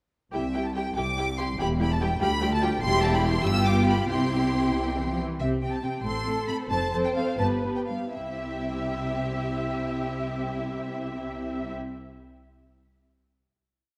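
In 6/8 with rubato, this quick, spirited and graceful classical-period movement for string orchestra in C major moves at 79-98 BPM in dotted quarters, slowing from 4.7 s into a brief coda before a final C chord arrives at 8.1 s. A focused, lush first violin section sings the melody up high, while an up-front, smooth-topped second violin section weaves a counter-melody with repeated notes and sustained chords, joined by a close, rich viola section voicing chords in the rhythm of the tune. The expressive cello section sets the bass on the beats with repeated notes and answers at phrase ends, doubled by a distant, even double bass section that also plucks pizzicato, the ensemble blooming in a moderate scoring-stage reverb.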